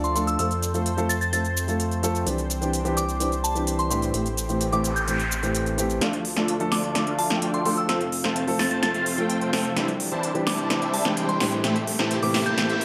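A straight 4/4 pulse at 128 BPM drives this triumphant, uplifting festival progressive house passage in C major, where a punchy big-room drum kit with crisp hats, snare and cabasa sits up front over a deep, saturated sine sub bass, a dark, mellow grand piano and an airy unison pad in the background, while a pure FM synth bell with chorus, 12-bit sampler grit and delay carries the melody, a very quiet noise sweep arrives at 4.5 seconds, and at 6.0 seconds huge, bright detuned supersaw chords with phaser and a filter sweep enter for a build-up with a drum fill over a Dm, F, Cadd9 and Am7 progression.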